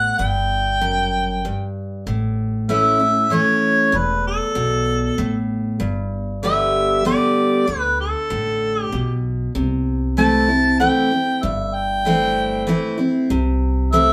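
A mellow harmonica carries the melody up front in a jazz-inflected style, its light vibrato and scooped notes sounding distant and roomy, in this nostalgic, sunny honky-tonk and classic country waltz cut from a longer piece. A bright, full-bodied picked acoustic guitar plays the accompaniment, while a woody pizzicato upright bass holds down the low end. The trio sounds like a band playing live in one small room with a wet reverb, moving from a chordless opening into chords of A, G and C6 after 2.1 seconds.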